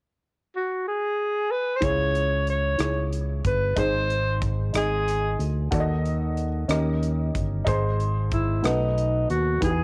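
Soulful and solemn, this slow gospel excerpt in 6/8 opens with a breathy, whispered alto saxophone alone at 0.6 s, its subtone and scooped notes carrying the melody through a cassette-tape haze, before a dark, mellow baby grand piano with audible action noise and the same tape coloring, a round, up-front fingered electric bass, and an airy, polished studio drum kit of hi-hat, punchy kick and rim click all join at 1.8 s in a small, homey room.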